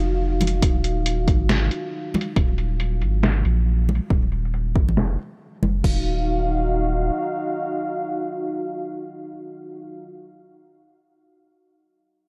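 A detuned, chorused sawtooth pad and a round, soft sub bass open this brooding, meditative deep dubstep excerpt from a longer piece, with a swung half-time feel; from 0.4 seconds a gritty, pitched-down sampler kit with low-pass filtered hats and snare and damped congas trailing dub echo join in, followed at 0.6 seconds by a deep house kit with a tape-warm deep kick and crash, all fairly dry as filter sweeps move over the drums and pad, before the bass stops at 7.1 seconds and the dark pad hangs on alone until 10.1 seconds.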